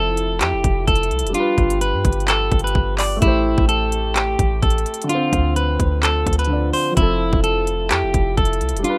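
Hard-hitting and dark, this half-time trap hip hop clip puts a slightly broken-up electric guitar melody up front over a mellow, deep-bassed grand piano and a distant, soft-attacked French horn section holding sustained chords in the background, all anchored by a boomy sine-based 808 bass and a crisp, tape-warm trap kit of hard-clipped kick, hi-hats and handclaps that enters at 0.2 seconds, with plate reverb on the guitar, piano and horns in a rough home demo mix.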